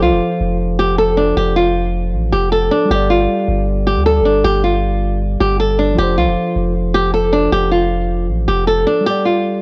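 A bright, fingerpicked flamenco guitar sits up front, its acoustic melody carrying audible finger squeaks as it moves between D4 and A4 through a low-pass filter. This short cut from a longer trap piece has a dark, menacing mood and runs at 156 BPM in 4/4 with a half-time feel, slightly below standard pitch at A4 = 439 Hz. Beneath it, a clean, direct tine electric piano with a mellow tone supplies filtered accompaniment across the whole clip. A deep, sine-like 808-style bass with a fast attack and long decay sits prominently in the mix until 8.9 s. The harmony alternates between F and Gsus2, and the dry, gritty hardware sound keeps the menace close and raw.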